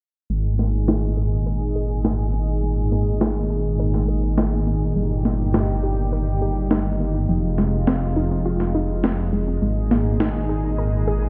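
Synthwave in Ab major at 103 BPM, this short, uplifting and nostalgic passage is cut from a longer piece and moves through Absus2, Eb/G, Fm7 and back to Absus2. A lush, thick unison pad holds sustained chords with a slow attack and long release, its vintage sawtooth tone warbling through chorus. Up front beside it, a dark detuned saw bass rumbles with a beating, saturated low end, while a filter sweep runs across it for the whole passage. Tucked in the background, a dusty, lo-fi pluck plays mellow arpeggios coloured by chorus, tape echo and slapback echo, and its sound evolves under a filter sweep of its own. An electronic, sampler-style snare enters at 0.6 seconds with a tape-tinged tone recorded in a small room, and the whole mix sits in a moderate hall reverb with a big arena sound and a low-pass filter.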